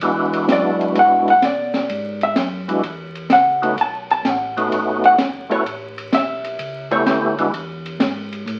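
A dark, clean hollow-body electric guitar, picked and compressed, sits up front and takes the solo from 0.5 s in this swinging, soulful soul jazz organ trio cut from a longer piece, moving at 128 BPM in E mixolydian over E7, B7 and A7 changes. A fat, lightly overdriven tonewheel organ with percussive key click, chorus vibrato and a slow rotary speaker carries the melody, while a second, round and mellow tonewheel organ on slow rotary holds down the bass beneath a small, smooth, rolled-off cocktail kit of hi-hat, ride and high-tuned snare. Moderate reverb and the crackle of a very old 78 rpm record give the sound a vintage patina.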